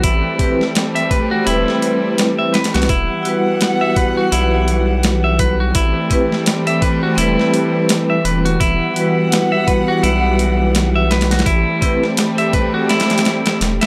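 A swung 16th-note groove at 84 BPM in 4/4 drives this hypnotic, melancholic trip hop excerpt, built on a compressed, pitched-down boom bap sampler-style kit with a thumpy kick, high-tuned snare and hi-hat sitting up front. A round analog bass with a deep, dark sine-like tone holds the low end beside the drums, while a studio string section plays sustained, intimate sul tasto chords with a smooth top and vibrato. A clean, twangy electric guitar picks bright arpeggios through tape echo, and a metallic, ringing vibraphone struck with medium hard mallets adds accompaniment through harmonic tremolo and tape echo until it stops at 12.0 seconds. The harmony moves slowly between Am7 and Emadd9. The sound is dry and gritty, with little reverb and a hardware character.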